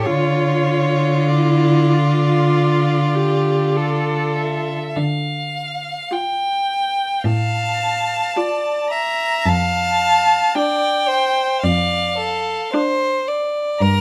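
In a free, rubato 4/4 that drifts between 48 and 56 BPM, this slow romantic movement for string quartet unfolds in D minor with an elegiac, solemn air. The first violin carries the melody with a rich, smooth, bowed tone shaded by vibrato, sounding up front yet slightly distant, while the second violin sings an even second line beside it. A clear viola supplies the inner accompaniment with vibrato, falling away at 13.6 s, just before the others finish at 14.0 s. The cello anchors the bass with a focused, smooth-topped sound and sits a touch louder than the upper voices. The harmony rests on D minor before moving to D minor over F at 9.5 s, and close, detailed microphones capture the quartet inside a moderate large-studio reverb, in a passage cut from a longer piece.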